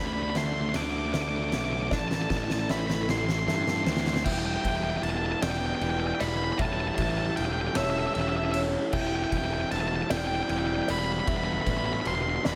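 A slow, straight 6/8 pulse at 51 BPM in E minor carries this cathartic, melancholic post-rock passage, cut from a longer piece, which opens with a build-up and drum fill as the oversized, low-tuned kit enters at 0.4 seconds with a boomy kick, fat snare and dark cymbals in a bright, pumping stone room. Up front, a growly, punchy overdriven bass anchors the low end while a distorted octave-fuzz lead guitar with slapback echo carries the melody over a double-tracked crunchy guitar riff, and a soft, boxy felt-muted upright piano, also given slapback echo, plays arpeggios in the background. A very quiet, twangy twelve-string electric guitar picks clean arpeggios until 4.3 seconds, and a lush, very quiet string section holds sustained chords with vibrato and portamento as the harmony moves from Em7 through A7/E and C6/E to Gmaj7/E, set in light reverb.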